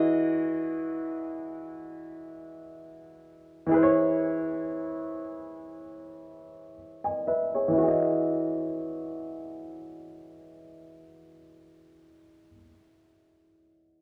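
Played in free time, this R&B fragment, lifted from a longer piece, carries a dreamy, romantic mood. A lone grand piano supplies the accompaniment throughout its 14 seconds, its intimate, natural tone sitting up front with the soft clatter of its action clearly audible. A low-pass filter shades the instrument, and a filter sweep moves across it during the opening stretch up to 7.8 seconds, when a new section begins. The harmony drifts between Emaj7 and E6 before settling back on Emaj7. A moderate plate reverb with a long tail blends with small-room ambience, giving the close, warm sound a gentle halo.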